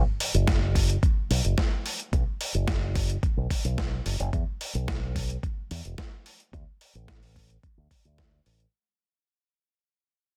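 A dense, heavily limited modern master with digital ambience frames this short nu-disco excerpt in B minor, a groovy, sensual cut at 109 BPM in a straight 4/4 that fades out across its 8.7 seconds. An up-front fingered electric bass, punchy and direct through an envelope filter, sits between E1 and E2 and carries a filter sweep throughout, while a thumpy, overdriven electronic kick drum sits up front. A gritty, dusty soul sampler-style kit adds hi-hat and a medium-tuned snare with its own overdrive, sitting lower in the blend.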